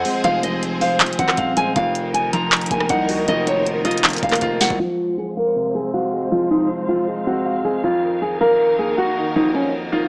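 Brooding and eerie, this half-time trap hip hop fragment at 158 BPM in F phrygian sets a fingerpicked, full-bodied nylon-string guitar melody up front over a soft, felt-muted upright piano and distant bowed strings with vibrato, the three low-pass filtered and moving between Fm and Ebmadd9/F, while a knocking electronic trap kit with sharp snare, bright hats, handclaps and rim clicks plays from the start alongside a heavy, distorted 808 bass until a drum fill at 4.4 seconds, after which both stop at 4.8 seconds and a filter sweep carries the guitar, piano and strings to the end with light reverb and a small-speaker tone.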